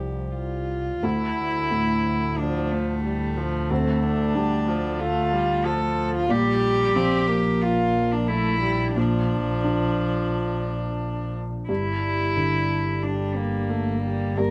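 Felt-muted upright piano, dark viola, warm cello and dark double bass all sound together from the first moment in this fragile, melancholic neoclassical excerpt in D minor, moving at a rubato 90 BPM in 4/4. The cello carries the second line, sitting up front yet sounding distant, its bowed sul tasto tone pure and floating with a soft attack. Alongside it the viola and piano share the accompaniment: the single bowed viola is dark and smooth at the top, while the muted piano sounds mellow and intimate, its action noise clearly audible. A lone double bass anchors the low end, bowed close and dark with vibrato. The harmony opens on Csus4 before settling into Dmadd9 at 1.0 seconds, then moves through Bb6 at 6.3 seconds and Gm at 11.7 seconds. Light reverb gives the soft, rounded sound a gentle sense of space.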